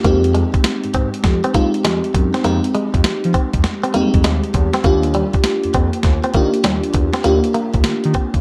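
Slick and confident, this short cut from a longer new jack swing track rides a swung 4/4 groove at 100 BPM in F dorian, tuned slightly flat to A4 = 435 Hz. A gritty, pitched-down boom bap drum kit sits up front, with a thumpy kick, a high-tuned snare and hi-hat. A smooth, saturated synth bass holds the low end beneath an FM electric piano layered with a soft pad, its lush, dreamy tone treated with chorus and placed close to the listener. A bright, twangy clean electric guitar plays a picked riff drenched in lush chorus, and all four parts play together from the start. The harmony moves from Fm9 to Ebmaj7 at 4.8 seconds, and a dark production with moderate digital room reverb frames the whole passage.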